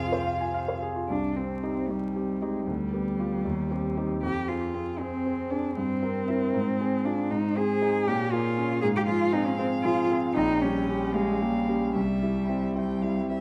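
Vinyl crackle and a moderate recital-hall reverb surround close, detailed microphones in this stormy, urgent cut from a quick classical-period piano trio movement in 6/8, moving at 77 beats per minute in dotted quarters with uneven, rubato pulse. A clear concert grand with deep bass and long sustain carries the accompaniment up front beside a smooth, even cello singing a vibrato second line. A focused, bowed violin melody sits quieter in the mix as the music shifts from C minor to F minor at 7.3 seconds and arrives on a C major chord at 11.9 seconds.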